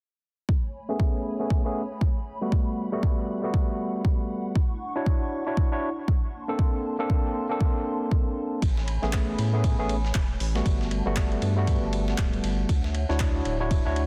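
A dense, heavily limited modern master with little reverb carries this sunny, soulful deep house excerpt, swung in 4/4 over Amaj9, Gmaj9, Dmaj9 and Bbmaj9 chords. A layered, tape-warm electronic kick sits up front alongside a hollow, flute-like pad with ensemble chorus and sidechain pumping, while a barky, overdriven tine electric piano plays gritty stabs through a low-pass filter, dub echo and a filter sweep. At 8.6 seconds a round, dark analog bass and a dusty sampler-style kit of hi-hat, ride and snare join, with electronic handclaps arriving at 9.1 seconds.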